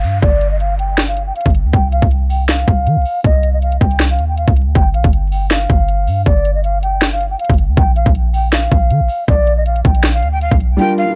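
Brooding and hard-hitting, this half-time trap and hip hop excerpt runs at 159 BPM in 4/4, cut from a longer piece and tuned slightly flat of standard pitch. A breathy jazz flute carries the melody from the start, its soft attack, vibrato and lifted highs given an unsteady, airy edge and shaded by a low-pass filter and digital delay. Underneath, a deep, boomy 808-style bass with a sine core, a noise layer and a fast, decaying attack sits up front beside an electronic trap kit of hard-clipped kick, sharp snare and metallic hats. A background downlifter opens the first 1.7 seconds, and a filter sweep runs across the passage as the harmony moves from G7 with its third dropped to C minor, back to G7 and on to B-flat. At 10.8 seconds the kick drops out and a felt-muted upright piano enters close and up front, dark, smooth and vintage through a low-pass filter. The mix is dry, with little reverb, and vinyl crackle lies over the whole recording.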